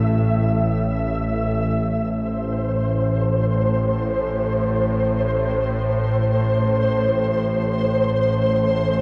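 Drenched in a wet spring reverb, this cut from a longer dark ambient drone piece feels desolate and unsettling, as a tense, string-like bowed drone with a sawtooth edge, noise layer and vibrato sits low and up front for the full 9.0 seconds while a grainy, flickering granular texture of detuned triangle tones hovers higher through shimmer reverb, the music moving into a new section at 2.1 seconds.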